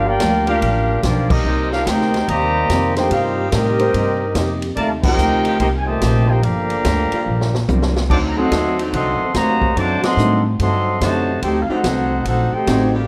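A mellow, up-front trumpet section opens this dramatic, brassy big band swing excerpt, carrying the melody over a dark, distant trombone section on the second line, while a woody, thumpy pizzicato upright bass and a fingerpicked steel-string acoustic guitar set down the foundation from the first moment. A swinging drum kit joins almost at once, its punchy kick and medium-tuned snare sitting alongside hi-hat, ride and crash cymbals and toms, and a saxophone section with vibrato slips in very quietly just after, holding sustained chords. The harmony moves from Gm7 to Cm7, returns to Gm7, and then turns toward a tense D7b9 at 8.1 seconds. Band accents punctuate the phrase at 1.2, 5.0 and 10.0 seconds, and the drums play a short fill before the final chord change. A smooth, vintage grand piano enters at 3.0 seconds and stays in the background with the jumbo guitar, and a moderate large studio reverb surrounds the whole ensemble, with the trombones sounding especially roomy.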